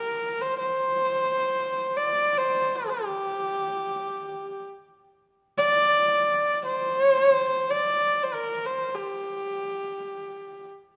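A single bowed horsehead fiddle carries this solemn, vast Mongolian folk excerpt alone from 0.0 to 10.7 seconds, its nasal, husky, earthy tone sitting up front with light vibrato and portamento as it moves between G4 and D5. The line unfolds in free time in the G yu mode, and the short passage repeats its opening material. A moderate scoring-stage reverb gives the fiddle a spacious, lingering tail.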